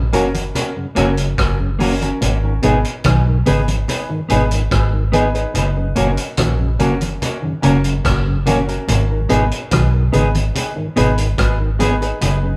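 A dark, round, foam-muted electric bass sits up front in this hypnotic, laid-back roots reggae excerpt, alongside a vintage drum kit with a punchy kick and rolled-off top marking hi-hat, kick and rim click, and very quiet, low-tuned congas played with soft hands. A clear, woody upright piano adds stabs and a dark, clean, fingered electric guitar sits in the background, both carrying dub echo, while a lightly overdriven tonewheel organ through a stopped rotary speaker hums faintly underneath. From 2.2 s a picked guitar with an envelope filter adds arpeggios as the chords move between F# and G#m, all played live together in a moderate stone room.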